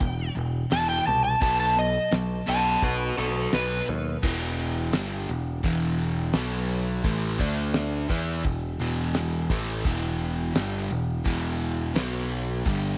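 Classic rock in E minor at 85 BPM with a swaggering, brooding mood, this short cut from a longer piece opens with a dark, overdriven slide guitar played with fingerpicks carrying the melody until 3.9 seconds. Beneath it, a double-tracked, hollow-body semi-hollow guitar churns out an overdriven riff, while a growly, punchy picked bass and a cloth-damped, thuddy drum kit with a fat snare, tight kick and dark cymbals hold the groove throughout. After the slide solo, the riff moves through Em, B5, A5 and D5 in a small room with light reverb.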